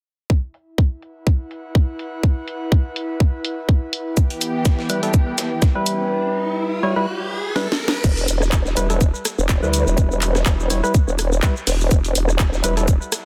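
A dense, heavily limited modern master with little reverb gives this swaggering, gritty bass house excerpt a close, punchy presence, sitting in E minor at 124 BPM with a light swing on the sixteenths. A tight, layered electronic kick drives from the start, joined almost at once by a garage kit of cracking snare, handclaps, rim click, shaker, hi-hat and crash, all filtered low, while an airy, breathy pad with slow attack and chorus drifts in above, pumping against the kick, and a filter sweep on the drums builds through the opening. Around 4.2 seconds a dark, con sordino string section adds brief bowed chords with vibrato, and a tape-warm, sampler-style breakbeat kit slips in behind, high-passed and pumping in the background. A hollow, percussive organ stab with chorus and delay punctuates the groove up front, a riser and a drum fill carry the build, and at 8.0 seconds the second section lands. 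There a nasal, saturated vowel-sweep wobble bass joins the low end, its formant filter giving it a resonant, talking wobble that drives the track.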